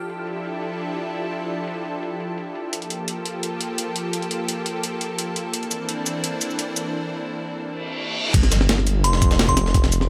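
A gritty, compressed breakbeat kit of filtered hi-hat, snare, cabasa and crash drives this rolling, soulful liquid drum and bass excerpt at 171 BPM in G dorian, under a lush, thick, detuned unison pad whose sustained, chorused chords span the build-up through the middle. A background reverse cymbal and impact lead into the drop at 8.3 seconds, where a thumpy electronic kick and a pitched-up jungle kit in the background join a menacing, saturated detuned saw bass with a filter swell that arrives up front. A glassy FM bell with chorus and tape echo chimes briefly at 9.0 seconds, all in a light digital ambience.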